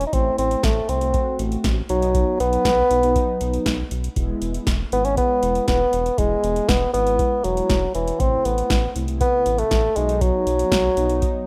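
A dark bassoon carries the melody in this synth-pop excerpt at 119 BPM, up front from the first moment alongside a round analog bass and an electro analog drum machine. The piece sits in E major in straight 4/4 with a nostalgic yet bright mood, with chords moving from Am to B and then settling on E before returning to Am and B. The bassoon has a smooth top and a classical solo character, with analog delay trailing its phrases. The overdriven drum machine sits prominently in the mix with a deep kick, a punchy snare and metallic hats, sounding as if re-recorded in a large room, while the bass adds an evolving, ring-modulated blend of sawtooth and sine. Mellow synth brass enters at 0.1 seconds and stays in the background, full-bodied and detuned, with chorus, vibrato and a filter sweep. The whole mix has light reverb and the rough feel of a home demo.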